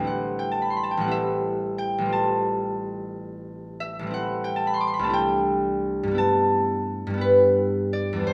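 Heard in a wet stone room with a 1.3-second reverb, this wistful, gentle classical excerpt features a solo concert harp, fingerpicked, ringing and up front, moving freely in rubato 6/8 through Am7, G9sus4/A, C69 and G69 harmonies across a span from A1 to D6.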